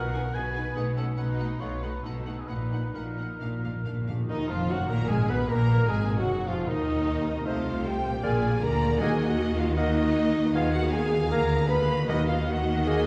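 Classical romantic orchestral movement in Eb minor, restless and stormy, fast at 130-158 BPM with rubato, where lush violin sections carry the melody and a second line over background violas, rich cellos, up-front double basses, a mellow cor anglais and ringing harp arpeggios, with a hard-mallet timpani fill at 3.4 s before airy flute, clarinet, bassoon and a tight French horn section holding sustained chords join at 4.3 s, the whole orchestra heard from further back in a wet scoring-stage reverb.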